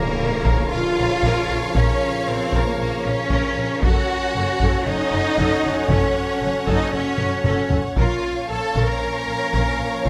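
Cinematic, epic orchestral film score at 116 BPM in 4/4, this relentless passage in Bb harmonic minor is cut from a longer piece and moves from Bbm to Gbm at 3.8 seconds before returning to Bbm at 8.0 seconds. A huge, dark, very quiet impact opens the passage, and a taiko ensemble struck with hard sticks enters close at 0.4 seconds, driving the music with a drum fill from 7.2 to 8.0 seconds. The bright, focused cello section sits up front on the bass line, reinforced by a dark, woody double bass section, while a lush, intense violin section carries a second line at a distance. The expressive studio violin melody, bowed with vibrato, stays in the background, supported by viola accompaniment. A mellow, tight French horn section and a roomy trombone section hold sustained chords, all set in a moderate recital hall reverb.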